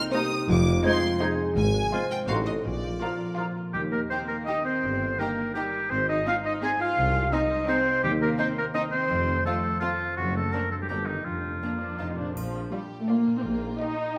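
Magical and playful, this whimsical cinematic film cue moves at 168 BPM in a straight 3/4, shifting from Eb major to Bb major at 8.0 s, as a clear, focused violin section carries the melody over a second violin line, dark portamento violas, ringing concert harp arpeggios, an up-front oboe with light vibrato, and a bass of rich cellos, double basses and soft-edged tuba, while mellow, distant French horns and an airy, crisp flute group colour only the opening until about 3.6 s and a bright triangle sparkles briefly at 12.4 s, all set in a wet scoring-stage reverb in this excerpt cut from a longer piece.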